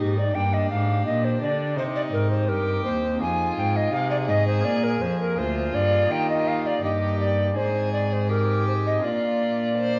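A tenor recorder, violin, pipe organ and cello sound together from the opening moment of this 10-second passage, cut from a longer baroque-style sonata movement with continuo in Eb major. At 83 BPM in a straight 4/4, the mood is radiant and dance-like. The hollow, airy recorder carries the melody up front with a tongued, straight tone and a woody chiff. Beneath it, a single period-style violin plays a second line with a gut-string quality, while the organ's bright, sparkling flute stops fill in a light baroque accompaniment. A rich, reedy cello anchors the bass, bowed with light vibrato and also placed up front. The harmony moves from Gm through Cm, Fm7 and Bb7 to Eb at 6.1 seconds, then on to Ab and Bb. The ensemble sits in a wet stone room, heard through worn, warbling old cassette tape with drifting pitch.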